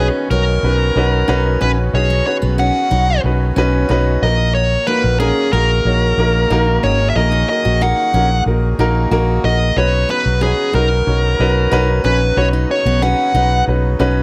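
A dark, smooth lead guitar carries the melody up front, its overdriven, picked tone bathed in plate reverb until it drops out at 13.6 s, in this anthemic, uplifting piano-driven pop excerpt. Beneath it, a woody, natural upright piano with its own plate reverb lays down the accompaniment, while a round, punchy, foam-muted vintage electric bass sits prominently. A full-bodied steel-string acoustic guitar picks a riff in the background with audible finger squeak, and a very quiet, reedy accordion holds sustained chords as the harmony moves from Badd9 to D#m and back.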